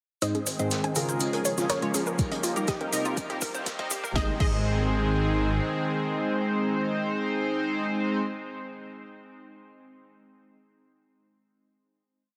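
Glossy, chorused polysynth stabs in dotted-rhythm open voicings sit up front in this expansive, euphoric progressive house build at 122 BPM in Ab major, over a lush supersaw pad, a glassy wavetable arpeggio, a very quiet unison pluck riff in thirds and sixths, a dark detuned saw bass galloping in sixteenths, an overdriven deep house kit with metallic hats, a gritty looped breakbeat from a vintage kit, grainy maracas and background tribal congas and cowbell. Filter sweeps rise on the polysynth, pad and arpeggio, and a huge ambient reverb surrounds it all. An electronic kick drives four-on-the-floor from 2.2 s during a drum fill before everything resolves onto a final Ab chord at 4.2 s.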